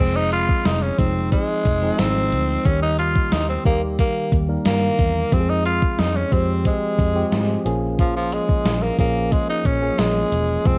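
A raspy, gritty tenor saxophone leads this nostalgic yet urgent 1980s-style pop excerpt in F minor at 90 BPM, sitting up front with bright vibrato and a cassette-tape tint as it sings over chords moving from Fm to Eb and back before reaching Bbm7 at 7.7 seconds. A clean tine electric piano, also tape-coloured, fills in the harmony while a dark, round, foam-muted fingered electric bass adds punch underneath. A 12-bit digital drum machine with a thumpy kick, medium-tuned snare and hi-hat joins at 0.3 seconds, re-recorded in a large room, and the whole home cassette recording carries light reverb and digital ambience.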